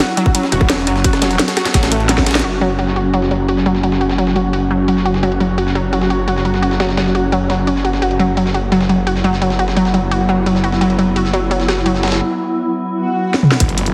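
This excerpt opens on a drop of dark technical drum and bass, mechanical and tense, with a swarming, wave-folded drone holding sustained chords and a bright, punchy unison pluck running arpeggios with dub echo, both pumping against the sidechain. A tight electronic kick and an up-front drum and bass kit with a cracking snare drive the opening until a fill and band accent at 2.4 seconds. A gritty sampler-style breakbeat kit with a high-tuned snare and a snarling, growling distorted saw bass carry on while a filter sweep moves over the pluck, before an electronic swell and impact close the cut, all set in a lush hall reverb and a heavily compressed radio sound.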